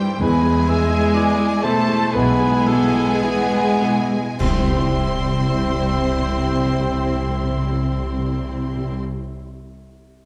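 A cinematic, emotional film score for orchestra in C major, this short excerpt moves at a rubato 50-66 BPM in 4/4 with a hopeful, tender mood, slowing down through its opening bars before an accent from the whole ensemble at 4.4 seconds. A warm, lush violin section carries the melody high in its range, with a focused, smooth top and vibrato, while a second, richer violin section, a mellow, distant cor anglais and a very quiet, airy silver flute trace supporting lines around it. A soft, felt-muted upright piano with audible action noise accompanies intimately in the background alongside a close, gently attacked viola section, and it is the last to sound, ringing on to 10.3 seconds. Roomy French horns hold sustained chords, and a smooth cello section and a woody double bass section, entering at 0.2 seconds, anchor the bass. At 4.4 seconds, hard-mallet timpani on C enter close and dry, joined briefly by bright clash cymbals and concert bass drum. 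The whole is bathed in wet scoring-stage reverb with a dark, warm production.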